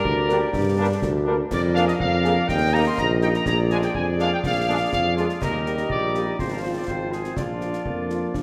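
A wet scoring-stage reverb gives this proud, rousing military-style wind band march a roomy sheen, with a mellow, vintage trumpet section carrying the melody up front over a punchy, smooth-topped tuba bass at 123 BPM in a straight 2/4. A tight woodwind section with vibrato adds a second line, while a very quiet, distant French horn section and soft-attack trombone chords fill in the background, all over concert bass drum, snare and dark clash cymbals. The harmony moves from G minor through E-flat to a closing B-flat, and a soft, vibrato-tinged euphonium slips in at 7.8 s just before this cut-off fragment ends.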